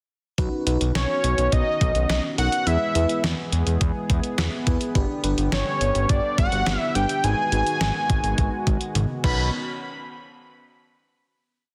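Wistful yet upbeat synth-pop at 105 BPM in B major, where a thumpy, fat-snared 12-bit drum machine and a thick, detuned sawtooth bass sit up front beneath a lush, chorused FM electric piano with a soft pad layer and a shimmering pulse-width pad, while a nasal analog lead with chorus, delay and vibrato carries a motif-based melody from 1.0 s, and an electric piano fill at 4.1 s and a closing drum fill lead to a final hit at 9.5 s, the mix set in light digital reverb and a dense, heavily limited master.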